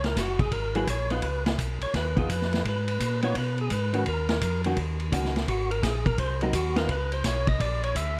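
A fat, percussive tonewheel organ takes the melody in this bluesy, greasy soul jazz organ trio excerpt at 169 BPM in Db mixolydian, its slow rotary speaker, light overdrive and plate reverb riding over a round, dark organ bass with chorus vibrato and key click, a gritty vintage drum kit with dark cymbals and a punchy kick, and a clean, compressed hollow-body guitar that accompanies from 0.8 to 6.9 seconds.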